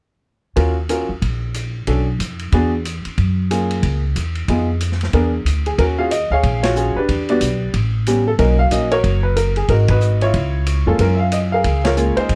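Late-night and swinging, this excerpt from a longer jazz piano trio piece moves at 184 BPM in Eb minor, with a clear, woody upright piano carrying the melody up front over a pizzicato upright bass with a steel-string tone and a gritty, saturated vintage drum kit of dark cymbals, tight kick, snare and hi-hat, all captured dry and close before the band hits accents at 6.6, 9.9 and 11.8 seconds in the second section.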